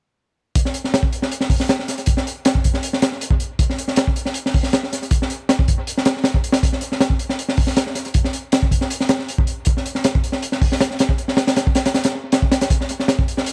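A straight 4/4 breakbeat drives this frenetic, dark drum and bass excerpt at 158 BPM, with a crunchy acoustic kit of hi-hat, punchy kick and high-tuned snare playing from 0.6 to 13.5 seconds. The drums sit up front with a gritty, saturated edge and a rolled-off top, their small-room sound carried by dub echo in an echo-heavy mix with light reverb.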